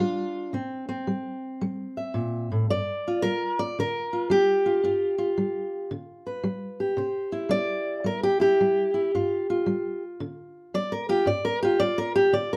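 A fingerpicked steel-string acoustic guitar plays alone from 0.0 s in this rollicking, gritty excerpt of acoustic country blues, cut from a longer performance. The tempo sits at 112 BPM in 4/4 with a swung eighth-note feel, giving the playing a loose, easygoing lilt. The guitar sounds dark and woody, with the dulled character of old strings, and it sits up front in the mix while ranging from G2 up to E5. The harmony moves between G7 and C7, touches on a plain C, and returns to G7 before the passage ends at 12.6 s. A moderate studio reverb lends a natural room ambience, as the music was played live in a single space.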